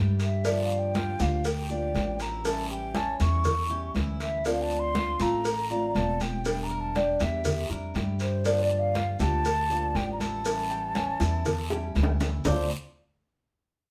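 Cuban son and guajira in D minor at 120 BPM, nostalgic and danceable, built on a woody, thumpy upright bass up front, fingerpicked nylon-string guitar and metallic double-stringed tres arpeggios, with an airy, hollow flute melody entering at 0.2 seconds over tight high-tuned cowbell and bongos, ringing congas, raspy guiro and grainy, distant maracas, moving through Gm7, A7, Dm7 and Em7b5 in a live-room sound before a drum fill at 11.7 seconds leads into a new section at 12.5 seconds.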